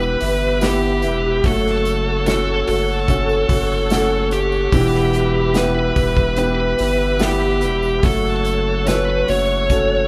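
A slow, straight 4/4 pulse at 73 BPM carries this melancholic, heartbroken pop ballad in E dorian, cut from a longer piece, with the acoustic studio drum kit entering at 0.2 s on hi-hat, a punchy kick and a medium-tuned snare, and a jingly, very quiet tambourine sitting close behind it. Up front, a bluesy overdriven electric lead guitar carries the melody in a picked, distorted voice, while a polished, present grand piano fills out the accompaniment. A deep, thick saturated sub bass holds the low end with a fast attack and sustained notes, and a small fingerpicked nylon-string guitar plays arpeggios in the background. A reedy, bright tonewheel organ lays down clean sustained chords with chorus vibrato, key click and a slow rotary speaker. The harmony shifts between Em and F#m, and the whole band sounds as if playing live in one room, bathed in a moderate large studio reverb.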